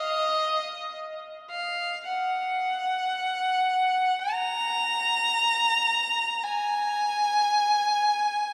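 A lone bowed violin opens this brief, meditative and mournful classical fragment, cut from a longer piece. Its rich, smooth tone, shaded with vibrato, sits up front and stays between Eb5 and Bb5 for the full 8.5 seconds. A lingering cathedral reverb surrounds the single player and lends the line a distant air.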